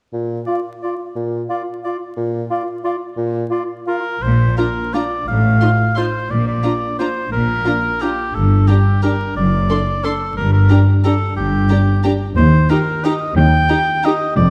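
A wet scoring-stage reverb and a layer of vinyl crackle frame this short, elegant and festive orchestral ballroom waltz in Bb major, moving in a rubato 3/4 between 163 and 198 BPM. It opens on woodwinds: an up-front, smooth-topped bassoon with vibrato, a mellow, hollow flute ensemble in straight tone, a distant, roomy clarinet, and a lightly vibrato oboe that carries on to the close. At 4.2 seconds a clear cello section and a soft-attacked double bass section take the bass, and from 4.6 seconds a pure, floating violin section sits in the background on the melody while a dark violin section and a viola section, both woody, lush and bowed sul tasto with vibrato, fill the harmony beneath as the chords move from Bb through Gm to Eb.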